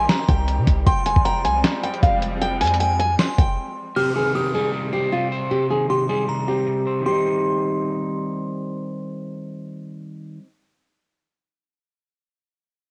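Hip hop trap in C minor at 155 BPM with a half-time feel, melancholic and brooding, where a fingerpicked nylon-string guitar melody and a crystalline FM synth bell line, both carrying cassette-tape grain and analog delay, float over veiled con sordino strings, a deep, boomy 808 bass and compressed, pitched-down sampler drums with a thumpy kick, until a short break at 3.6 seconds gives way at 4.0 seconds to a slightly broken-up electric guitar and a downlifter in the background.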